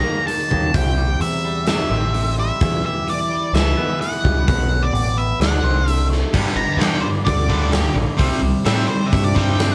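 Captured as a band playing live in one room with light reverb, this short cut from a longer quiet-loud alternative rock piece has an angsty, cathartic mood in a straight 4/4. It opens in half time, with a dark octave-fuzz lead guitar carrying the melody up front over a bright, clean and compressed twangy electric guitar playing arpeggios through a phaser. A big acoustic drum kit with a punchy kick, medium-tuned snare, hi-hat and crash cymbal joins almost at once, sounding roomy with a rolled-off top, alongside a growling, round electric bass pushed through overdrive. At 6.3 seconds, an overdriven, bright distorted electric guitar enters with a riff up front, and the fuzz lead turns into a solo. The change lifts the music from its brooding opening into a heavier, more urgent release.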